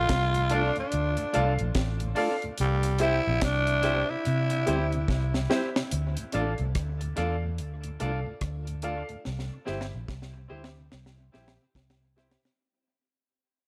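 A laid-back, meditative roots reggae groove swings on sixteenths in 4/4, carried by a dry kit with a high-tuned snare, tight kick, rim click and hi-hat, treated with dub echo and breaking into fills. A raspy, gritty tenor saxophone with vibrato leads up front over a round, foam-muted electric bass until 5.3 seconds, while a bright, clean semi-hollow guitar with spring reverb, a worn, woody upright piano with audible action noise, and a mellow tonewheel organ on slow rotary speaker sit behind. The passage drifts between Dm and C and fades out from 5.9 seconds in this short cut from a longer piece.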